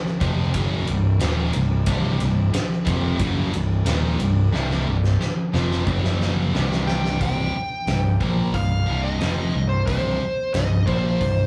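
A huge arena drum kit opens this menacing, aggressive hard rock excerpt, its punchy kick and fat snare sitting up front in a big room alongside hi-hat and ride cymbal at a straight 90 BPM in 4/4. Almost at once a wall of picked riff guitars arrives: a scooped high-gain guitar carries the weight, backed by a very quiet bright high-gain guitar, while a growly fuzz bass with overdrive punches beneath them in C minor. At 1.9 seconds a double-tracked distorted guitar joins the riff, staying very quiet in the mix until it drops out at 7.2 seconds. A drum fill runs from 4.5 to 7.2 seconds as the harmony moves from Cm through F#5 and C5, and a dark, smooth overdriven lead guitar enters at 6.9 seconds with a high melody as the music returns to Cm. The whole recording has a rough rehearsal-room character with tube saturation and a moderate studio reverb.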